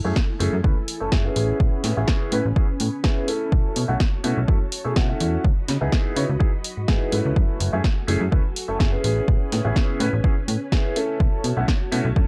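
Funky and groovy, this filtered disco house excerpt moves at 125 BPM in F# dorian with a light 16th-note swing, a filter sweep running across its full 12.3 seconds as chords like F#m9, Amaj9, B9sus4 and C#m9 cycle past. A bright grand piano with audible action noise, phaser and sidechain pumping carries the accompaniment over lush, chorused string-machine chords sitting in the background, while a snappy FM bass with a metallic attack and an overdriven, up-front electronic kick drive the low end. A punchy analog drum machine adds a tape-warm snare and pumping hi-hats, and the whole mix has a dry, gritty, cassette-tape character.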